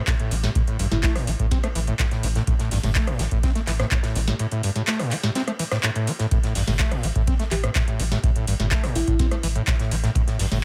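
A driving 4/4 acid house groove at 125 BPM runs straight through this gritty clip cut from a longer piece, built on a deep, tape-warm electronic kick that drops out between 4.4 and 6.3 seconds. Alongside it, a booming analog drum machine with a crisp snare, metallic hats, handclaps and rim clicks carries the same re-recorded large-room character, while a dark, smooth soul drum kit sits in the background with hi-hat, ride and a medium-tuned snare, its cymbals and hats pumping against the sidechain. Up front, an overdriven acid bass plays a squelchy, resonant sawtooth riff from G2 to C4 in A minor pentatonic, with filter sweeps, tube saturation, lush chorus, sidechain pumping and dub echo. Beneath it, a round, dark analog bass holds sustained low notes between G1 and A1, also pumping. A bell-like FM electric piano sparkles in briefly around 0.9 seconds and returns from 7.5 to 9.6 seconds with chorus, tremolo, 12-bit sampler grit and dub echo, all set in a small room ambience, with the clip opening on an A5 chord.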